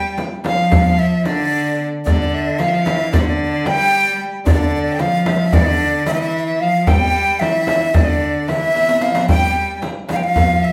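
A breathy metal flute carries a hypnotic, melancholic melody with expressive vibrato from the opening moment, joined by a clear, bowed cello line and a soft, floating violin played sul tasto beneath it, in this fragment of a longer Turkish makam ensemble piece in 9/8. Just after the start, a large, deep clay-shell darbuka struck with hard hands drives the rhythm alongside a small, bright vintage-toned frame drum, while a riq with dark jingles sits distant in the background, and a drum fill arrives at 8.8 seconds. The group plays live together in one room, bathed in a lush studio reverb.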